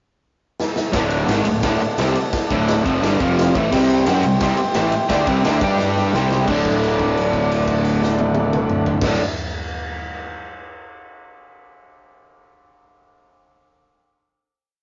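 A crunchy, double-tracked electric guitar leads this short, swaggering garage rock piece with a power-chord riff dipped in spring reverb, entering at 0.9 s after a drum fill, while a growly fuzz bass doubles it in driving eighth notes. Up front alongside them, a punchy, gritty drum kit pounds out a stomping groove in a bright stone room and fills again before everything lands on a final held chord at 6.5 s, as a reedy combo organ with heavy vibrato sustains triads in the background. The rowdy performance comes across as a rough rehearsal-room take with saturated, dark-topped sound.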